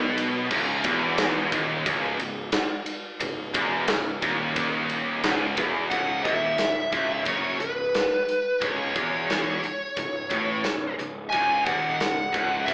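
Driving and heavy, this hard rock excerpt moves at 89 BPM in C# minor, with two bright rhythm guitars, one overdriven and one scooped and high-gain with distortion, grinding out low riffs alongside a fuzzy, punchy overdriven bass on a single C#m chord. A big, acoustic rock kit sits up front with a punchy kick, medium-tuned snare and glittering cymbals, entering at 0.2 seconds. At 5.9 seconds a dark, smooth overdriven lead guitar takes the melody up front, all of it heard through a large studio room with a live, band-in-one-room feel and a lo-fi AM radio sound.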